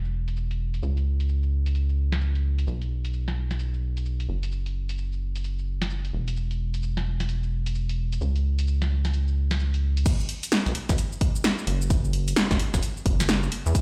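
A swung two-step garage groove at 130 BPM in 4/4, with a 62% swing on the sixteenths, gives this moody, bouncy UK garage excerpt its skipping, off-kilter push. A punchy analog drum machine runs from the start, its crash cymbal, hi-hat, shaker and snare all passed through low-pass filters, so the kit sits up front yet dulled, with a tape-warm snare that still cracks. Underneath, a rubbery square-wave bass rolls between E1 and E2, hollow and wave-folded with a resonant filter pluck, a fast attack and a mellow, sustained tail. At 10.1 seconds the drop arrives as an electronic kick drum joins, a layered, punchy hit re-recorded in a large room and placed up front. The mix has little reverb of its own, but the whole thing sounds as if played on a big sound system in a bare stone room, lending a hard, echoing space to an otherwise dry, close groove.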